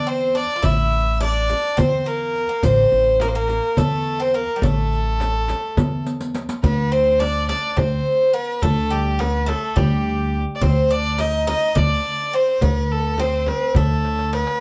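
A biting, nasal violin with light vibrato and an airy bow carries the soulful, hypnotic melody up front, over a bright, metallic bouzouki second line and a woody pizzicato upright bass in this Turkish makam ensemble excerpt at 210 BPM in 7/8, moving from makam kurdi on A to makam hicaz on D at 6.6 s. Riq with soft-handed jingles enters first, followed closely by the darbuka, which is crisp and set in the background, and then the deep frame drum, which is close and dry. The riq drops out at 6.6 s after a drum fill, and another fill closes the passage at 14.0 s, all heard from further back in a small, reverberant room.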